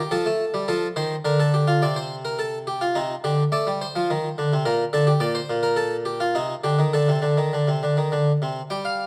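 Close, detailed microphones catch every plucked note of a solo French-style harpsichord, up front and mid-forward, its brilliant tone doubled by octave strings and set in a moderate recital hall reverb. This short cut from a longer baroque-style two-part invention moves at 105 BPM in a straight 3/4, elegant and stately, spanning Bb2 to G5. An opening phrase gives way at 1.8 seconds to a longer passage that moves through chords such as Dm, Bb and Cmadd9 before settling on D5 near 6.9 seconds.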